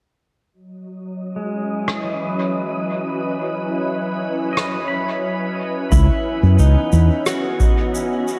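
Spacious and deep, this ambient dub fragment opens on a calm, organ-like pad holding a C#m11 chord with ensemble chorus and reverb, joined by an airy, wind-like noise texture, a bright, twangy pedal steel playing echoing arpeggios as both pad and steel move through a filter sweep, and a muffled rim click and shaker, before at 5.9 seconds a round, punchy fingered electric bass, an overdriven analog kick and a clean lap steel melody trailing dub echo arrive within a small, lightly reverberant room.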